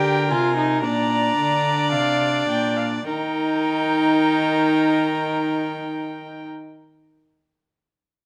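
The viola stands out most, sitting up front with a warm, smooth-topped tone as it carries the accompaniment between D4 and G4. This is a short cut from a baroque-style fugue for string quartet in Eb major, joyful and elegant, moving at a slow 50-59 BPM in a straight 4/4. The first violin leads the melody from F5 to Bb5 with a dark, nasal sound that sits distant in the blend. The second violin, with light vibrato and a rich tone, traces a second line between Bb4 and D5. The cello, also up front, anchors the bass from Bb2 to Eb3. All four players use gut strings in a reedy period style. The opening passage slows down through its first 3.1 seconds as the harmony moves from Eb to Bb, then settles back on Eb as a new section begins. The close, detailed miking sits within a moderate recital-hall reverb.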